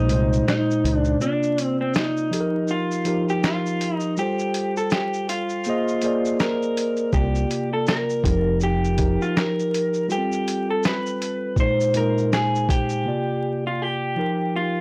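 Lo-fi hip hop at 81 BPM with a swung 16th feel, mellow and cosy, cut from a longer piece and moving through suspended ninth chords. A slightly broken-up electric guitar through a small old amp carries the melody over a clean, mellow tine electric piano, both softened by a low-pass filter, while a dark, round fingered dub bass appears only briefly, at the very start and again from 7.1 to 9.2 seconds. A muffled, pitched-down sampler-style drum kit with a thumpy kick, medium-tuned snare, hi-hat and shaker adds vintage 12-bit grit, and the dry hardware recording sits in moderate reverb with transformer saturation and vinyl crackle.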